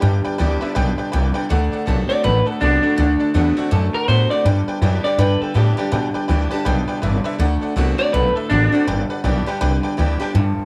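A woody, thumpy upright bass sits up front in this rollicking, rowdy rockabilly excerpt in G major, swinging at 163 BPM while the harmony moves between G and D7. A twangy, slightly broken-up electric guitar carries the melody through tape echo until 8.9 s, over a lo-fi second electric guitar playing a low riff. A picked steel-string acoustic guitar with fresh strings and audible finger squeak fills out the accompaniment alongside a jangly, metallic tack piano in its upper register, all set in a light studio reverb.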